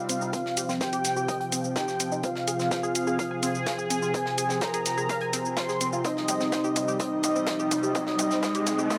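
An expressive, smooth synth lead carries the melody under a filter sweep through this melancholic, hypnotic melodic techno build-up, joined above by a fat, nasal polysynth playing a second line and wrapped in an evolving, airy resonant pad, all pumping against the beat over a Cm to Fm/C and back to Cm progression. A tight, driving sequenced synth adds gritty arpeggios, while a house kit with bright hats, shaker and toms and a polished small-room acoustic kit with hi-hat and snare play a drum fill throughout, joined at 0.3 seconds by a punchy electronic kick set in the background. A background riser enters at 7.2 seconds, and the whole piece has a dry, gritty hardware sound with a light digital ambience.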